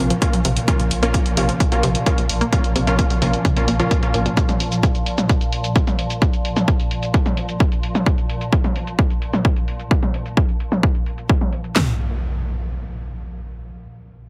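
A punchy, up-front techno drum kit with kick, cracking snare, handclaps and toms drives this intense, industrial peak-time techno cut at 130 BPM in Bb minor, joined by a tape-warm analog drum machine of hi-hat, shaker and toms as a filter sweep runs over the drums until 11.8 seconds. Over a held Bb minor chord, a thick, saturated sine sub bass, a lush detuned sawtooth pluck riff and bright, aggressive rave stabs with chorus, reverb and tape echo pump with sidechain until 4.3 seconds, alongside a swarming, granular drone that evolves tensely through the whole first section. The pluck returns briefly as an electronic impact lands at 11.8 seconds and carries to the end, with the mix pressed into a heavily compressed, radio-like sound with light reverb.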